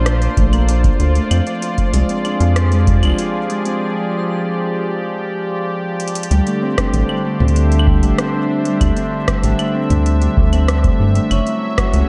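A smooth, warbling analog pad with chorus and ringing, fingerpicked Celtic harp arpeggios with delay open this melancholic, glitchy IDM passage at 96 BPM in 4/4. Sounding from the start with them are an up-front, hollow and bouncy square-wave bass with tube saturation and a faint, sparkling granular texture with its own reverb in the background. A booming analog drum machine with metallic hats, claves, rim click and toms sits low in the mix, while a deep electronic kick drum adds weight. The granular shimmer stops at 3.8 seconds as a break begins, and a drum fill at 6.0 seconds leads into the second section, where the kick returns at 6.8 seconds. The harmony moves from Bbmaj7 and Fm6 to D7sus4, closing on F#m7. The production is dark, with light reverb and digital ambience, and the drums sound tape-warm and re-recorded in a large room, in this passage cut from a longer piece.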